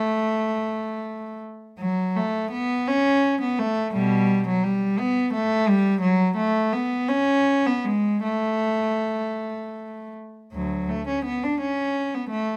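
In a rubato 6/8 at roughly 51-58 BPM counted in dotted quarters, this radiant, serene baroque-style suite movement for unaccompanied cello is a short passage cut from a longer piece, settling into A major from 6.0 s. A single bowed cello plays alone throughout, ranging from D2 to D4, with a reedy, gut-string period tone that sits up front. Close, detailed microphones catch every grain of the bow, and a light reverb adds a touch of air around the instrument.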